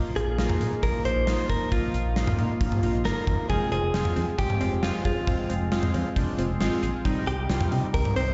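A straight 4/4 synth-pop groove from a gated, up-front 80s drum kit with tight kick, medium-tuned snare, hi-hat, toms and cowbell carries this wistful yet bright fragment, underpinned by a smooth gliding synth bass and round, detuned analog keys with chorus and a filter sweep. A clean, compressed, direct-recorded electric guitar plays the picked melody with spring reverb, while a very quiet, shimmering, retro pulse-width pad holds sustained chords and a lush, punchy unison pluck adds arpeggios from 3.5 s. The mix sits in a lush hall reverb and sounds as if played on a big system in a bare room, its top end capped at 7.8 kHz.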